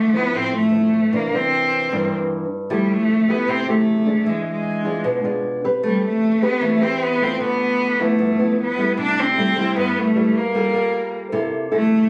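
Bossa nova at 153 BPM in a straight 4/4, melancholic and intimate, moving from A minor into C major at 9.0 s through lush extended chords such as Dm9, Fmaj9 and E7b9. A single bowed cello carries the melody up front with expressive vibrato and portamento and a slightly distant quality, while a classical nylon-string guitar, thumb-plucked and warm, supplies the accompaniment. Light reverb and compression color this phone-captured room recording, which is cut from a longer piece.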